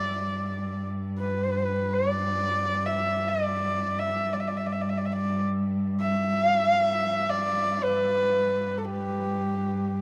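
Unmetered and free in time, this ten-second fragment of Mongolian traditional folk music moves in the G gong mode with a galloping yet vast mood. A horsehead fiddle carries the melody from G4 to E5, its husky, nasal voice sounding earthy and up front, shaded with light vibrato, portamento and an airy bow. Beneath it, a cello holds a low G2 drone played sul tasto, its dark, intimate tone marked by a soft attack, vibrato and a smooth top. Both single players sit close and run together from 0.0 to 10.0 seconds, with the fiddle standing above the quieter cello. A moderate, huge ambient reverb with a 5.1-second decay wraps them in space, and the overall production stays dark and warm.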